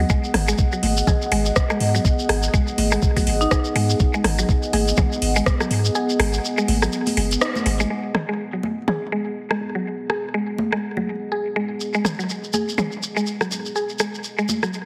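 The recording has a heavily compressed, radio-like sound with light digital ambience, framing a sparse, clinical stretch of minimal techno at 123 BPM in G# minor, swung on the 16ths and opening on a G#m7 chord. A deep, punchy sine sub bass with a pitch-drop attack sits up front with sidechain pumping, while a woody, round FM pluck carries the riff through chorus and tape echo, and a dark, detuned sawtooth pad spreads a moody, wave-folded, ring-modulated haze under chorus and built-in reverb. A knocking, tape-warm electronic kick anchors the groove until 5.6 seconds, alongside a garage kit of metallic, low-passed hi-hats and rim clicks that stops at 7.8 seconds. Further garage-kit percussion of congas, rim clicks and toms carries on with reverb and delay, and a grainy shekere sits close and dry through much of the passage. A brief marimba note struck with medium hard mallets surfaces in the background at 3.4 seconds, trailed by delay, in this cut from a longer piece.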